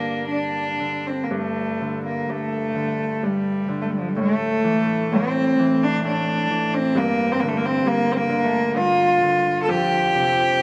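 A Celtic slow air in three, played with free, rubato timing and a longing, haunting mood, cut from a longer piece. A bowed cello carries the melody up front with a soft attack and a pure, floating sul tasto tone, while a mellow, thumb-plucked Celtic harp rings beneath it throughout. A bright, biting fiddle with light vibrato sounds a very quiet second line only until 0.8 seconds, and the whole is bathed in a wet cathedral reverb.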